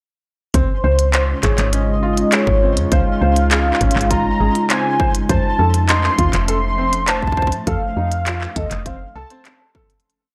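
Intricate and wistful, this short IDM piece moves at 101 BPM in a straight 4/4, set in Db major and tuned to A4 = 439 Hz. A velvety, smooth synth lead carries an arch-shaped motif with vibrato, chorus, analog delay and vintage 12-bit sampler grit. From 1.1 seconds, a warbling, nostalgic pad of detuned square, triangle and sawtooth tones holds slow-attack chords through chorus, reverb, phaser and sidechain pumping. Alongside them, a felt-muted upright piano, soft and intimate with audible action noise and analog delay, loops a 14-step arpeggio that drifts against the bar, while an up-front woody, round FM bass plays a syncopated riff. The drums come from an electronic kick with a heavy, broken pattern and a glitched industrial kit of crisp closed hats and handclaps in an ever-changing beat, both re-recorded in a large room, and a pulsing, tempo-synced gated texture sustains a high note in the background. 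The harmony shifts from Dbmaj7 to F7 at 5.3 seconds, and the piece fades out from 6.9 seconds within a dry, gritty hardware recording with digital ambience.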